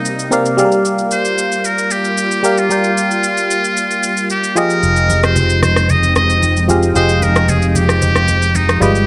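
A faint downlifter opens this soulful, deep amapiano excerpt as a muted trumpet, a barking FM electric piano and a soft string machine all begin together, moving from Cm7 through Gm7 to Fm9 in a straight four-beat feel. The trumpet leads up front with a buzzy, brilliant metal-mute tone, vibrato and scooped notes, trailed by a digital delay. Beside it the electric piano plays biting, percussive accompaniment with a fast attack and chorus, while the string machine holds silky, slow-blooming chords in the background under an ensemble chorus. An overdriven electronic shaker and rim click come in at 0.1 seconds, carrying a gritty, lo-fi sampler edge. At 4.8 seconds a round, dark fingered electric bass enters low, and very quiet acoustic congas played with hard hands follow at 5.1 seconds. Light reverb and digital ambience frame the mix.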